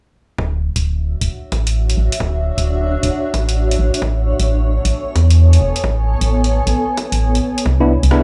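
A hollow, dark, organ-like FM bass pumps up front through a filter sweep in this sunny, soulful two-step garage fragment, joined by a punchy, small-room electronic kick and an analog drum machine's swung hi-hat and rim clicks, while a blurred, cloudy granular pad drifts in at 1.4 seconds through Dmaj9, Amaj9 and Cmaj9, and a clean tine electric piano stab arrives only at 7.8 seconds in a dry, gritty mix.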